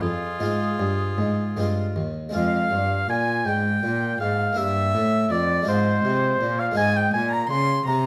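From the first moment, a rich gut-string violin sings an introspective, flowing melody over a warm oboe second line, a brilliant, dry, plucked harpsichord and a nasal period-style cello bass in this baroque-style sonata movement in F minor, unfolding in a slow 6/8 at 51-55 BPM and captured close and detailed in a moderate recital hall.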